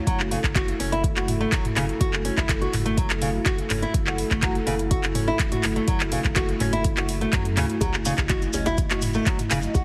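Afro house at 124 BPM in F# dorian, hypnotic and spiritual, this short cut from a longer piece rests on a single F#m7 chord, with a deep, overdriven electronic kick and an up-front afro-pop kit of handclaps, metallic hi-hats and toms, both touched with studio reverb and overdrive. A bright, fingerpicked nylon-string guitar plays up-front arpeggios with audible finger squeak and delay, over a dark, detuned analog pad with ring modulation and chorus holding sustained chords, and a round sine sub bass, all three pumping to the sidechain. At 7.8 seconds a tight, cracking djembe and grainy maracas join in the background, all within a small, lightly reverberant room and a heavily compressed, radio-like sound.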